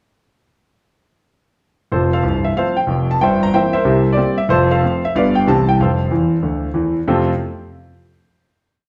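A large studio room wraps the recording in a generous, wet reverb, giving the feel of a band playing live together in one space. This is an exuberant, playful stride jazz piece in a swinging four, carried entirely by a solo concert grand piano. The piano sits up front with a clear, natural tone, a deep bass and a short sustain. It enters at 1.9 seconds, laying a tune over chords while a stride bass bounces underneath, and the harmony moves briskly through a short run of changes. A lively fill arrives at 6.1 seconds before the piece resolves onto a final chord that fades into the room's reverb.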